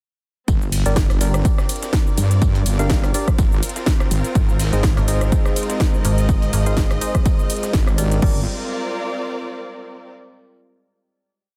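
Bouncy and aggressive, this bass house piece in G phrygian drives at 124 BPM with a swung 16th feel, as a punchy, overdriven four-on-the-floor kick sits up front alongside an overdriven house kit of cracking snare, metallic hats, shaker, ride, rim and crash, over a gritty looped breakbeat from a dusty soul sampler-style kit in the background. A heavy, saturated wobble bass with changing wobble speed pumps against the kick. It is joined at 5.0 s by a dark, moody analog pad and chopped phrases from a metallic FM bass, while hollow, echoing organ stabs with a tape-worn edge pop up sparsely. A clear, lush studio string section with vibrato shifts slowly underneath and carries on into the final chord, alone after 8.4 s, until 10.1 s, all in a dense, heavily limited, nearly dry mix.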